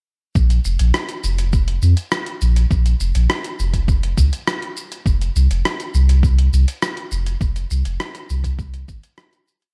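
This short, complete sunset chillout piece opens at 0.4 seconds with a deep, round sub bass playing a mellow, syncopated riff between F1 and F2, joined by a thumpy electronic kick and a dusty, sampler-style soul kit of closed hi-hat, rim click and shaker laying down a light lounge beat at 102 BPM in a straight 4/4. The mood is wistful and warm, with the bass and the soft, compressed kick sitting up front while the gritty kit has the character of drums re-recorded in a large room. The mix is echo-heavy with little reverb, and the piece fades out from 6.6 seconds, the soul kit carrying on alone from 9.0 until 9.7 seconds.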